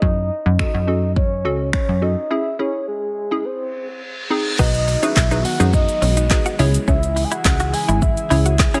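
Confident and driving, this dance-pop excerpt in C# minor at 105 BPM pairs a round, dark octave-layered synth lead, with chorus, tremolo and delay, against a hollow, warbling square pluck and a punchy, funky analog bass that pump under sidechain, all over an up-front deep house kit of deep kick, woody snare, dark hats, snaps, claps and shaker, with a break at 2.3 seconds, a reverse cymbal and downlifter entering at 3.8 seconds, and a section from 4.6 seconds that brings in a clean, direct-recorded electric guitar riff, an airy, breathy background pad and barely audible crisp group handclaps in a dry mix.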